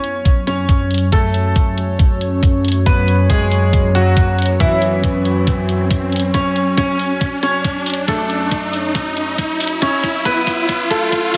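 Heavy wobble dubstep in a menacing half-time build-up, where a clear grand piano melody with chorus and tape echo floats over a detuned, morphing wavetable pad that pumps under sidechain, carries phaser and a filter sweep, while bright electronic hi-hats and a knocking kick from 0.3 s drive forward, an electronic riser climbs in at 2.7 s and a drum fill arrives at 6.3 s, all set in a dreamy, reverb-soaked mix.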